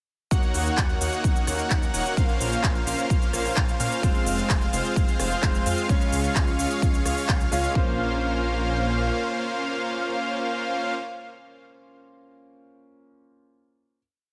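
A punchy four-on-the-floor electronic kick and an overdriven big-room kit of crisp hats, shaker, rim and clap backbeat drive this anthemic, emotional festival progressive house piece at 129 BPM in Bb minor, where huge, bright supersaw chords pump and echo through a rhythmic riff over a thick, chorused, detuned saw bass playing driving eighth notes, a bold, mellow unison lead with vibrato doubles the chords in arpeggios, a very quiet, phasered pad sustains beneath, and a clear concert grand piano enters in the background at 4.0 seconds with held chords and syncopated pushes that ring on after the drums drop out at 7.8 seconds into a final chord.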